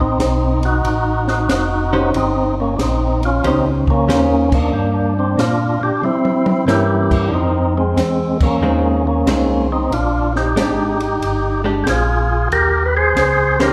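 A percussive tonewheel organ with key click and slow rotary speaker carries the bluesy, swinging melody up front in this soul jazz organ trio excerpt at 92 BPM in Eb mixolydian. It plays over a piping, scooped tonewheel organ bass, a dark, punchy-kicked cocktail drum kit with a high-tuned snare entering at 0.2 seconds, and a dark, compressed hollow-body jazz guitar accompanying from 1.9 seconds. Band accents and a drum fill at 6.0 seconds punctuate the excerpt, all set in a reverberant hall.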